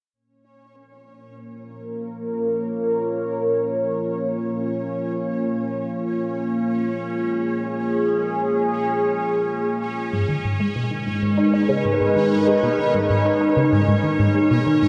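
Drenched in a huge ambient reverb with an 8.1-second decay, this excerpt of ambient, sequencer-driven space music has a mysterious, hypnotic air, moving at 96 BPM in a straight 4/4 and tuned to A4 = 435 Hz. A sweeping resonant pad sits up front from the start, holding sustained chords from G#3 to C#5; its detuned sawtooth and triangle tones, a sine sub octave and chorus give it a bright, evolving body, and a filter sweep runs through it across the whole passage. Beneath it, a bubbling stepped-filter texture fades in from 0.6 seconds, its random filter steps, slow attack and chorus set in its own built-in reverb between C#4 and C#5. The harmony rests on A#m before shifting to G#m at 10.1 seconds, where a resonant blip pluck enters with a riff from G#2 to D#4. This juicy, squelchy voice blends sawtooth, triangle and ring modulation with a fast attack and short decay, colored by phaser, subtle chorus and analog delay for a mellow edge.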